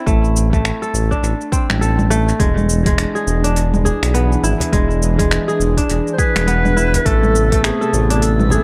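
Meditative and warm, this organic downtempo excerpt opens on ringing, fingerpicked kora arpeggios with tape echo over an up-front sawtooth synth bass that pumps, a deep electronic kick, and a crisp, dub-echoed drum kit of cabasa, congas, finger snaps and hi-hat, all swung on the sixteenths. A detuned, mellow analog pad with chorus settles in the background at 2.4 s as the harmony moves from Am to E7, and a woody, soft-handed cajon enters at 3.9 s. At 6.1 s a breathy, close-miked clarinet takes a jazz-style solo with vibrato, scooped notes and tape echo, heard in a small room within an echo-heavy mix.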